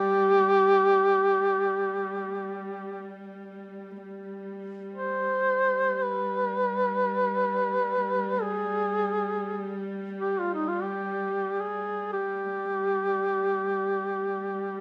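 Moving in free time, this Caucasian folk lament carries a longing, mournful mood as a warm duduk sings the up-front solo melody between Eb4 and C5 with vibrato and scooped notes, while a dark, intimate chamber string section sustains a soft-attacked, bowed sul tasto drone on G3 beneath it in a moderate studio reverb, as if the players share one room, in this 14.8-second cut from a longer piece.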